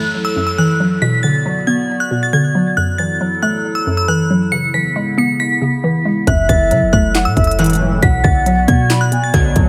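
A half-time trap groove at 137 BPM in 4/4 holds this dark, brooding hip hop excerpt in F# minor, tuned slightly flat to A4 = 435 Hz, as the chords move through F#m7, Bm and C#m7. From the start, a glassy, crystalline FM synth bell carries the high melody with chorus, phaser and analog delay. Beneath it, a hollow, bouncy square-wave pluck plays the accompaniment up front, and a warbling, nostalgic lo-fi pad holds sustained chords in its own reverb. An electronic downlifter sits in the background until 2.8 seconds. At 6.3 seconds the trap kit arrives with a hard-clipped kick, sharp snare, crisp hats and handclaps, alongside a deep, boomy 808-style sine bass and a breathy concert flute with vibrato playing a second line through delay. Edgy, nasally sweeping sync polysynth stabs join at 7.6 seconds, and the whole track sits in an echo-heavy mix with light digital ambience and vinyl crackle.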